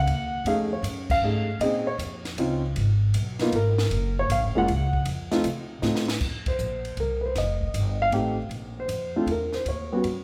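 Late-night and smoky, this short excerpt from a longer jazz piano trio piece swings in 3/4 at 156 BPM, with a dark, mellow baby grand carrying the melody up front, its intimate tone marked by audible action noise and long sustain. A woody, growly pizzicato upright bass sits close alongside it, while a compact cocktail kit adds dry, dark cymbals, a high-tuned snare and a punchy kick. The band hits accents at 1.0 and 6.4 seconds, with a drum fill leading into the second section at 6.2 seconds, all set in a moderate recital-hall reverb with a church or concert hall feel.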